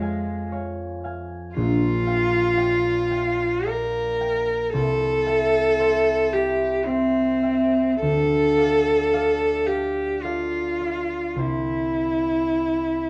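A romantic classical duo for cello and harp, serene and lyrical, unfolds at 48-60 BPM in a rubato 3/4. The single bowed cello carries the melody with a clear, smooth, even tone and vibrato, while the concert harp supplies a ringing, thumb-plucked accompaniment across a broad register, both placed up front within a moderate stone-room reverb and a dark, warm production. This 13.1-second excerpt moves through Db/F, Gm7/Bb, C and Dm before returning to C.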